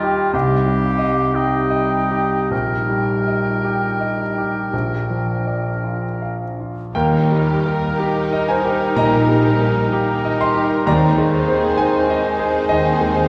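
Classical romantic music for piano and orchestra in Eb major, lush and passionate at a slow, rubato 49-67 BPM, cut from a longer piece: a clear, intimate grand piano carries the melody up front with audible action noise and long sustain, joined from the start by a hollow flute and a warm oboe on second lines over a dark French horn section's sustained chords, before bowed violin sections, a mellow bassoon, very quiet rich violas, cellos and double basses enter at 6.9 s, and barely audible soft-mallet timpani sound at 10.9 s, all set in a wet concert hall heard from further back in the room.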